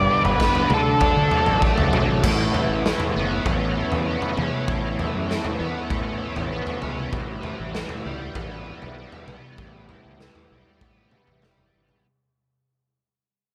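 A dark, fuzzed-out lead guitar with slapback echo opens this trippy, hazy psychedelic rock excerpt for just its first 1.6 seconds, while a bright, double-tracked overdriven guitar riff run through a rotary speaker sits up front over a round, punchy fingered bass, a gritty, saturated garage drum kit that enters at 0.2 seconds in a pumping stone room, and a buzzy vintage combo organ holding vibrato chords in the background, before the track fades out from 2.2 seconds.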